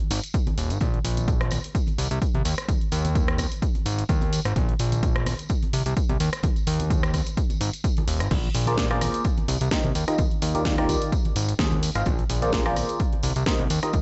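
A digital ambience with its top end rolled off above 7.9 kHz frames this joyful, feel-good slice of piano house, cut from a longer piece and moving at 128 BPM in 4/4 with a light 16th-note swing. A punchy analog-style electronic kick sits up front from 0.3 seconds, alongside a layered house kit of crash, hi-hat, rim click and a cracking snare, tape-warmed and re-recorded in a large room, while tambourine and congas add acoustic texture from a small room. A fat, thick analog bass built from detuned sawtooth and square waves, with a plucky filter and sustained notes, pumps against the sidechain between Eb1 and Eb2. The harmony begins with bare Ab5 chords separated by chordless gaps, then opens into a Bb9, Cm7, Ebmaj9 and Ab6 progression. At 8.7 seconds a barking FM electric piano enters up front with a biting, percussive attack and a noise layer, running through phaser, cassette tape coloring, tape echo and sidechain pumping as its riff spans Eb3 to F5.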